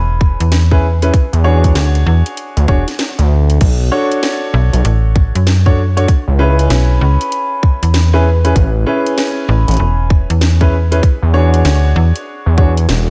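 A boxy grand piano opens with stabs that pump under sidechain compression and trail into a diffuse ambient delay, while a snappy FM bass with a metallic, digital attack sits beneath it from the very start. Almost at once a tight, overdriven electronic kick and a layered drum kit arrive, bringing a cracking snare, bright hi-hats, rim clicks and crash cymbals set in studio reverb. At 1.3 seconds a gritty, aggressive synth bass joins, a saturated sawtooth tone with oscillator sync, a resonant filter pluck and sustained notes that sit up front alongside the kick. The swung sixteenths give this glitch hop a funky, swaggering strut as the harmony moves from a rootless Amaj7 through E13, Bm7 and C#m7 before circling back. The passage is cut from a longer piece and ends at 13.1 seconds.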